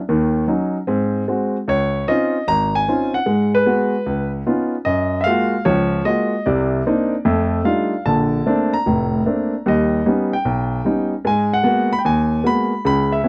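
A dry, close 1970s-style studio sound with a touch of light reverb frames this short, sophisticated and relaxed jazz cut in Db major, where a polished, up-front grand piano plays alone from 0.1 to 13.3 s at a swinging 151 BPM in 4/4, moving through rich chords such as Dbmaj9, F13 and D#aug7, with a second section beginning at 4.9 s.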